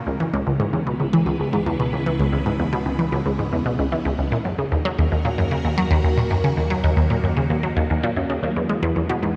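Ambient, sequencer-driven space music in C# dorian at 113 BPM, this mysterious, hypnotic excerpt from a longer piece is set in a vast, echoing cathedral-like space, moving through C#m7, D#m and E. A juicy, squelchy blip pluck sits up front with a bright, resonant riff, its ring-modulated, detuned tone colored by phaser and tape echo. Beneath it, a swirling vintage string machine fades in across the full 9.4 seconds with sustained chords under ensemble chorus, phaser and shimmer reverb, while a fat, very quiet analog bass holds the low end with a filter sweep.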